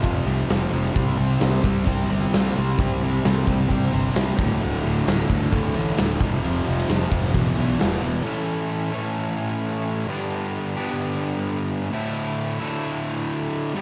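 A fuzz guitar riff opens at once, bright, double-tracked and compressed, sitting up front with distortion and a slapback echo, while a big, punchy rock drum kit crashes in alongside it and an overdriven, fuzzy picked bass rumbles in the background. This cut from a longer quiet-loud alternative rock piece moves in a straight 4/4 with a restless, cathartic mood. The opening stretch churns through power chords on F, C, D and E, the acoustic drums giving a natural big-room feel with a medium-tuned snare and a punchy kick. The bass and drums drop out at around 8 seconds, leaving the guitar alone as the harmony opens onto A, G and a suspended D chord until 13.8 seconds. A lush hall reverb and a touch of small-room ambience give the mix a big arena sound, overlaid with a cassette-tape grain.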